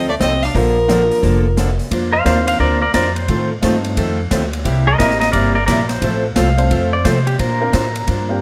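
Light reverb surrounds this cheerful, swinging western swing excerpt in Bb major at 175 BPM, which opens with a rich, smooth bowed fiddle melody over a dark, clean hollow-body archtop guitar line for its first 1.6 seconds, while a picked dreadnought acoustic guitar, a woody, growly pizzicato upright bass up front, an airy, polished big-band drum kit with a punchy kick and, from 0.9 seconds, a clear, slightly detuned upright piano in the background carry the accompaniment, until an up-front pedal steel guitar, compressed and played with fingerpicks, slide and volume swells, takes a solo from 1.9 seconds to the end.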